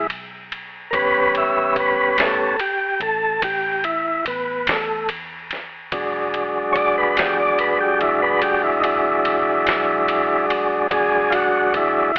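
A smooth, key-clicking tonewheel organ sits up front and takes the solo for the whole 12.2 seconds, holding sustained chords that move from A9 to E9 through a slow rotary speaker and cassette-tape grain in this laid-back, rollicking slow blues at 48 BPM in 12/8, backed by a dark, round, foam-muted electric bass in the background and a muffled, compressed, pitched-down sampler-style drum kit with thumpy kick, ride cymbal and medium-tuned snare, the recording dry and telephone-toned like a home cassette, cut from a longer piece.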